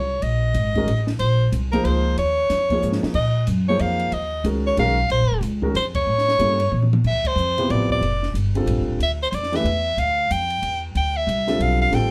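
A swung waltz at 184 BPM in 3/4 gives this hypnotic, spiritual modal jazz passage, cut from a longer piece, a lilting pulse that moves from Eb dorian into D dorian at 7.1 seconds. A breathy soprano saxophone carries the melody up front, its clear, present tone colored by vibrato and a soft subtone. The upright bass sits close as well, played pizzicato with a woody sound from steel strings. A compact cocktail drum kit enters at 0.2 seconds, dark and smooth with a high-tuned snare, a punchy kick and a rolled-off top, sitting lower in the mix and adding a fill just before the shift into the second section. A grand piano comps from 0.8 seconds with an intimate, natural warmth, its action noise audible, over chords that pass from Ebm9 through A7b9 to Dm11 and Fadd9. The group is heard from further back in a small room with moderate reverb, with band accents punctuating the phrases.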